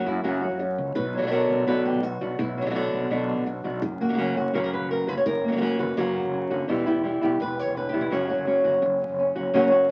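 A dark, fingerpicked flamenco guitar carries the melody up front in this passionate, dramatic flamenco fragment, joined by a second fresh-stringed acoustic guitar playing stabs and a punchy, direct fretless electric bass beneath, all heard through a small room's moderate ambience and the crackle of a very old 78 rpm record.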